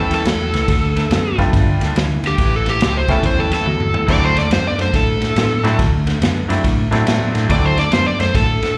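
Laid-back and gritty, this electric blues shuffle swings at 141 BPM in D mixolydian, heard as a live club gig through the venue's PA with club reverb and a faint mains hum. An overdriven slide guitar played with fingerpicks leads up front with slapback echo, over a bright, woody, slightly detuned upright piano with audible action noise that drops out at 7.7 seconds, a lo-fi, slightly broken-up electric guitar riff through a small old amp with analog chorus and slapback echo, and a round, punchy fingered bass. A dark, up-front vintage drum kit with a punchy kick, dark cymbals and a rolled-off top plays a fill at 3.7 seconds, and the slide guitar takes a solo from 4.1 seconds over the move to D7.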